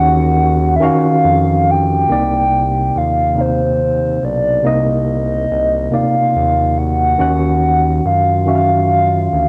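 This is a slow R&B piece in 6/8 at 47 BPM, counted in dotted quarters with a straight feel in C minor, carrying a sultry, yearning mood in a short excerpt cut from a longer piece. Up front, a hollow, woody synth lead with a clarinet-like voice carries the melody between C5 and G5, its soft attack, vibrato and warble giving it a vintage, detuned character colored by chorus and a cassette tape effect. Beside it, a barky tine electric piano plays the accompaniment from C3 to Gb5, sounding worn, slightly out of tune and lightly overdriven, as if heard through built-in speakers. Underneath, a smooth synth bass blending sawtooth and triangle tones holds sustained notes from B1 to Gb2 with a fast attack. The harmony opens on Ebm9, moves to Cm9 at 2.1 seconds, and returns to Ebm9 at 7.2 seconds, all set in light reverb with the intimate feel of a home recording on cassette.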